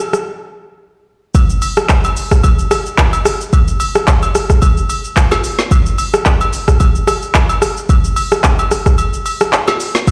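Late-night and hypnotic, this short amapiano excerpt moves at 110 BPM in 4/4 with a lilting 16th-note swing. An electronic, up-front afro-pop drum kit with a deep kick, woody snare, smooth hats, rim click, shaker and handclaps carries the groove from the opening, with breaks at 0.3 and 9.0 seconds. From 1.4 seconds a quieter, close-miked acoustic layer of agogo bells and woodblock adds tube shaker and group handclap textures, all set in light reverb that suggests a big sound system playing in a bare stone room.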